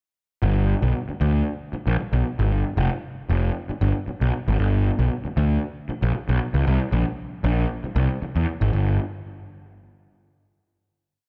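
Funk at 116 BPM with a strutting, energetic mood, this short piece is a solo breakdown for picked electric bass from 0.4 s, its bright, punchy fuzz tone overdriven and up front as it plays a syncopated riff anchored on the downbeat with muted ghost notes and chromatic approach notes, all set in a moderate echo chamber reverb and a dark production before the final chord arrives at 8.7 s.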